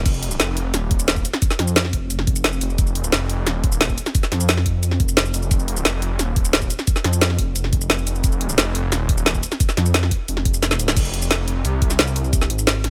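A detuned saw bass opens this dark, technical drum and bass excerpt, thick and saturated with chorus, its sustained sawtooth tone sitting up front and pumping under sidechain compression. Almost at once the drums arrive: a layered electronic kit with a woody snare, bright hats, shaker and crash, driven hard with overdrive. Beneath it a knocking electronic kick plays in a straight 4/4 metre. The mood is futuristic and tense, the whole passage riding the drop with very little reverb, so every part sounds close and dry. A drum fill at 10.6 seconds leads into a band accent at 10.9 seconds, and the kick drops out at 12.4 seconds while the bass and kit carry on to the cut.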